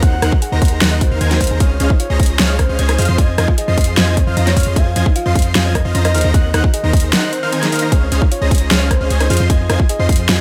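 Opening at once with a hard-clipped electronic kick, a big-room dance kit with a huge snare, metallic hats and rim clicks, a deep sine 808-style bass, and huge detuned supersaw chords pumping under sidechain, this euphoric, lush future bass excerpt at 152 BPM in a half-time feel in Db major carries a round, dark octave-layered synth lead melody with chorus and dub echo, an airy, dreamy lead in the background playing high arpeggios with a cassette-tape tint, and a very quiet, tine-like thumb-piano-style FM pluck warbling through its own arpeggios, all bathed in digital ambience over chords moving from Ab7/Eb through Dbmaj9 and Fm7.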